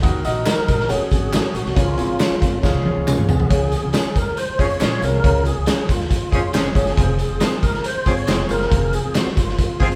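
A straight 4/4 groove at 138 BPM drives this joyful, uplifting slice of uptempo 1960s-style soul in Db major, cut from a longer piece. The raw garage drum kit sits up front with a punchy kick, medium-tuned snare, hi-hat and toms, its top rolled off, and it plays a fill from 2.6 to 3.5 seconds leading into a new section. Beneath it, a woody, thumpy upright bass on gut strings is plucked low, while a tube shaker and group handclaps sit in the background. A clear, slightly detuned upright piano with long sustain carries the accompaniment, and a distant, roomy horn section with octave doubling and light vibrato adds a dark second line behind it. From 0.5 seconds a fat, lightly overdriven tonewheel organ takes the melody with key click, chorus vibrato and a slow rotary speaker, as a clean, fingered electric guitar adds mellow stabs through spring reverb. The band sounds as if it is playing live together in one stone room with moderate reverb, and the chords move from Ebm and Gbm to Db and later Fm.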